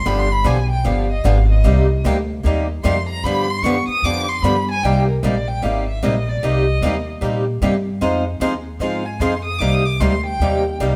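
A stone room's moderate reverb surrounds this bittersweet, swinging gypsy-jazz fragment in C minor at 151 BPM, where a close, bowed violin with vibrato and portamento solos expressively over a woody, thumpy pizzicato upright bass up front, a boxy, bright swing guitar, and a concert steel-string guitar picked in the background, moving through G7b9, Cm9 and Fm7 harmonies.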